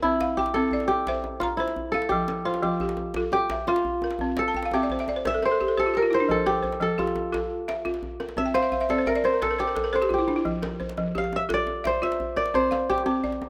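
West African traditional music in 12/8, joyful and flowing, where a crisp, ringing, fingerpicked kora carries the melody up front over buzzing, woody balafon arpeggios struck with hard rubber mallets, with balafon fills at about 4.5 and 8.5 seconds and a brief fill from the deep, saturated djembe at 5.6 seconds, set in a rough home demo mix with moderate plate reverb in this short excerpt from a longer piece.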